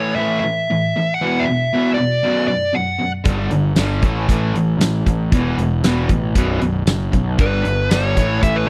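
A straight 4/4 classic rock groove swaggers with gritty attitude as a bright, double-tracked overdriven stack guitar riff and a dark, smooth lead guitar melody open together, joined at 3.3 seconds by a fuzzy, picked electric bass and a huge arena drum kit with a fat snare, punchy kick, hi-hat and tambourine, before the lead guitar returns at 7.4 seconds, all captured in a dry, close 1970s-style studio sound with the parts up front.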